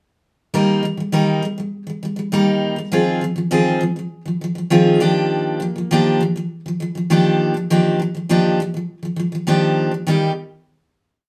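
At an unhurried 101 BPM in a straight 4/4, a lone picked steel-string acoustic guitar carries this short, sunny acoustic pop piece in Eb major, strumming sixteenths through open chord shapes that move from Eb to Fm7/Eb and Bb6/Eb over a held Eb bass before settling on a final Eb chord at 10.1 seconds. The jumbo-bodied guitar sits up front with a full-bodied, warm tone, and some finger squeak comes through. A small, wet room reverb gives it the easy-going feel of a live take.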